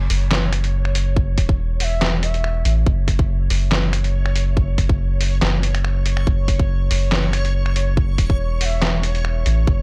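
This heavy, cavernous deep dubstep piece opens on a round, deep sub bass with a soft triangle-and-square tone, a barely audible electronic impact, and a reversed, detuned granular texture. That texture swells dreamily high above, bathed in its own reverb. A compressed, pitched-down sampler-style trip hop kit of finger snaps, handclaps, hi-hat and a medium-tuned snare sits up front with small-room ambience. A tight, layered electronic kick joins at 1.2 seconds. The groove moves in half-time at 141 BPM in 4/4 and F# minor, with a light swing on the sixteenths. A breathy, bright low ney slips in from the background at 1.8 seconds and again briefly at 8.6, its tongued, expressive phrases carrying vibrato and trailing dub echo. Cut from a longer piece, the whole has a dry, gritty hardware character, with cassette tape colour and a faint mains hum.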